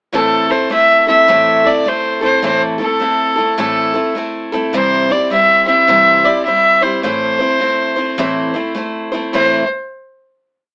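Dusty and brooding, this short, complete country piece moves at 104 BPM in 4/4 with a swung eighth-note feel, set in A minor and tuned slightly high to A4 = 442 Hz. A clear fiddle carries the melody up front, a single bowed player with light vibrato and an airy, nasal, earthy, boxy edge, building its line from short motif-based call phrases. Underneath, a picked steel-string acoustic guitar strums eighths in open chord shapes, its bright auditorium-body tone also up front, though a little quieter than the fiddle. The harmony rests on Am, shifts to C at 4.7 seconds and returns to Am at 7.0 seconds, closing on a final chord from 9.3 seconds. Light reverb and an AM-radio coloring give the whole recording an old, faraway broadcast character.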